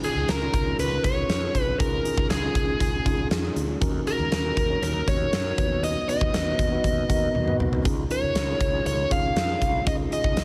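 A straight 4/4 pulse at 119 BPM drives this romantic, uplifting 1980s-style pop excerpt in Db mixolydian, powered by a huge, punchy arena drum kit with a pumping hall sound and a fill at 7.3 seconds. A biting, bright lead guitar with overdrive and digital delay carries the melody up front, while a mellow, clean tine electric piano and a dark, round fretless bass, entering at 0.2 seconds, fill out the harmony. The chords move from Dbadd9 through Ebm7 and Cb/Eb before returning to Dbadd9, all set in light reverb and studio ambience.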